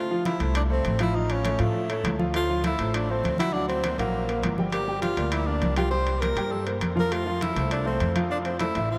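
Breathy tenor saxophone leads this short cut from a longer Afro-Cuban jazz piece, its clear, soft-attacked solo line sitting up front with scooped notes in a jazz style. A warm, smooth, vintage grand piano supplies the accompaniment beneath it, moving through a sophisticated progression that opens and closes on Fmaj7. Pizzicato upright bass enters at 0.4 seconds, woody and dark with steel strings, and sits up front alongside the horn. In the background, damped congas with a thick skin and a compressed, saturated edge join almost at once, while ringing metal-shell timbales with a band-limited, vintage character play from 0.3 to 8.9 seconds. The whole band is bathed in a huge, wet reverb that places it in a vast, echoing space, giving the danceable groove a distant, cavernous sheen.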